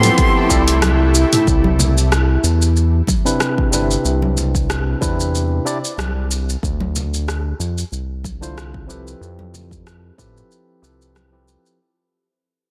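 Sunset chillout in C major at 93 BPM, this relaxed, sunny excerpt from a longer piece sits in 4/4 with a light swing on the sixteenths. A breathy, bright jazz flute opens with a brief phrase that has a crisp, chiffy attack and vibrato, trailed by digital delay, while a shimmering, ethereal pad holds a detuned, granular chord through chorus and its own reverb until 1.5 seconds. Throughout, a barky, clean electric piano carries the accompaniment up front with digital delay. A round, mellow analog bass anchors the low end with sustained, evolving tones. A tape-warm deep house kit of hi-hat, rim click, shaker and toms, with softly clipped snare, pairs with a layered electronic kick and soft-handed, saturated congas tucked in the background. The harmony moves from Fmaj9#11 through Cmaj7 and Dm9 before returning to Fmaj9#11, all under a moderate plate reverb and a dense, heavily limited master as the track fades out from 1.5 seconds onward.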